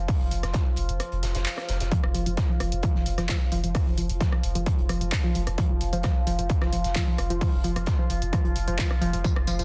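A saturated, overdriven sub bass pumps beneath a resonant sawtooth drone with moving overtones and chorus to open this driving, industrial peak-time techno excerpt at 131 BPM, where a distorted, up-front electronic kick, a punchy tape-warm analog drum machine of handclaps, hi-hat, rim click and tambourine, and a distant, roomy acoustic kit with a fat snare drive the groove, the kick dropping out from 1.0 to 1.9 seconds and returning just as a warbling, lo-fi, wave-folded pluck with dub echo enters on F3 in a dense, heavily limited mix.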